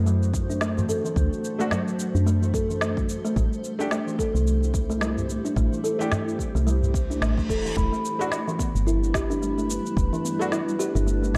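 A woody, round FM bass sits up front in this meditative organic downtempo excerpt, pumping beneath a blurred granular cloud pad while a hollow kalimba plays delayed arpeggios, a felt-muted upright piano adds intimate accompaniment from 1.6 seconds, an overdriven deep electronic kick and tape-touched electronic shaker and snare carry the swung groove with small acoustic udu, a pure quartz singing bowl rings in the background, and a reverse cymbal at 7.2 seconds leads into the shift from D7 and Am7 to Em7, all in a dark production.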